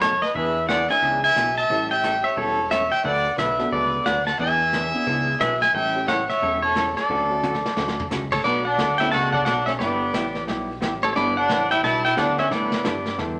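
A bright, twangy pedal steel guitar carries the melody up front in this cheerful, swinging western swing excerpt at 178 BPM in D major, with a clear fiddle playing a second line, a clean hollow-body jazz guitar comping alongside a jangly, detuned upright piano tucked in the background, a fat, nasal analog bass, and a dark brush drum kit that plays a fill from 7.4 to 8.1 seconds before the harmony shifts at 8.4 seconds, all set in a wet studio reverb.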